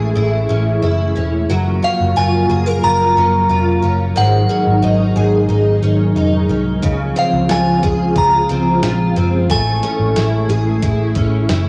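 A crystalline FM synth bell carries a dreamy, floating melody through chorus, phaser and tape echo over a shimmering, octave-doubled twelve-string acoustic guitar picking arpeggios, warbling sawtooth string-machine cellos holding mellow sustained chords, and a dark, round, foam-muted electric bass with tube saturation, all moving through Amaj7, Gbmaj7, Ab7sus4 and Dbmaj7 at 90 BPM in Db major, until a clean 12-bit drum machine with a thumpy kick enters at 6.8 s, the whole cut from a longer dream pop piece and wrapped in light reverb and gritty cassette tape character.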